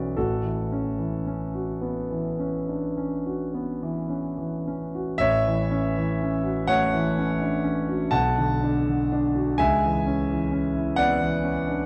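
Serene and dreamy, this short impressionist classical fragment for solo piano drifts in A major at a slow, rubato pace of 35-44 BPM, counted in dotted quarters in 9/8. A concert grand sits up front, its deep bass and long sustain opening into a moderate concert hall reverb, and the production stays dark and warm as the harmony settles from A69 to A6 before shifting through Bm7 at 8.1 seconds and C#m7 at 9.6 seconds. Cut from a longer piece, it ends at 11.9 seconds.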